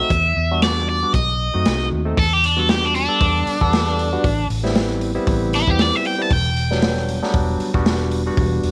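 A small room with light reverb gives this brooding, smoky soul blues excerpt a close, intimate sound. It moves at 116 BPM in 4/4 in E minor, with a straight-eighth feel, a gentle swing on the sixteenths and tuning set slightly low at A4 = 437 Hz. A crunchy breakbeat drum kit with a tight kick, medium-tuned snare and hi-hat sounds saturated and gritty, its top rolled off. Beneath it, a vintage muted fingered electric bass stays dark and round, while a barky tine electric piano, lightly overdriven through a combo amp with phaser, comps up front over Em7, B7b9 and Am7 chords. A cranked stack guitar, bright and picked, carries the melody with overdrive and phaser and breaks into a solo at 2.2 seconds. The guitar drops out at 7.8 seconds, leaving the keys, bass and drums to finish the fragment.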